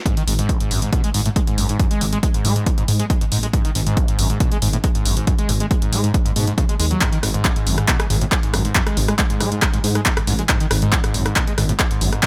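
Relentless and industrial, this driving peak-time techno cut runs at 138 BPM in a straight 4/4, with an overdriven electronic kick and a punchy analog drum machine of handclaps, hi-hat and rim click pushed up front and running from the start to 12.3 seconds. A dark, detuned saw bass rumbles deep beneath them with tube saturation and sidechain pumping, while an overdriven acid bass riff, squelchy and gritty with a resonant filter sweep, cuts through with distortion, lush chorus, delay and its own sidechain pumping. The sound is dry and close, with little reverb, in this short excerpt from a longer piece.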